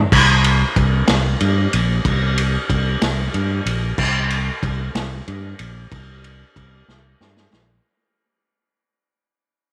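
Psychedelic rock in a dark, trippy 6/8 at 62 dotted-quarter beats per minute, tuned to A4 = 441 Hz, this short cut from a longer piece pairs an up-front, round fingered electric bass, direct and amped, moving between Bb1 and G2, with a vintage acoustic drum kit of crash, ride, medium-tuned snare and punchy kick, mid-forward and rolled-off on top in a studio room, set in light reverb as the sound fades out from 0.1 to 7.8 seconds, with a drum fill entering at 6.9 seconds and carrying through to the close.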